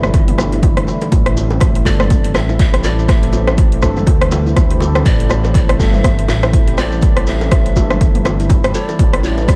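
A driving, swung 4/4 groove at 122 BPM anchors this warm afro house excerpt in A minor, with a punchy, overdriven electronic kick up front and an overdriven deep house kit of hi-hat, rim click and toms carrying reverb and dub echo, while tight, high-tuned bongos joining at 0.1 s and a grainy shekere sit in the background beneath a deep, rumbling detuned saw bass that pumps with the sidechain, ringing stainless-steel handpan arpeggios with pumping and dub echo, a very quiet, moody analog pad holding sustained chords that move from Em7 to Am7 and back to Em7 at 9.0 s, and a breathy bamboo pan flute melody with vibrato, chiff and an unsteady dub-echoed tone, all in an echo-heavy small room.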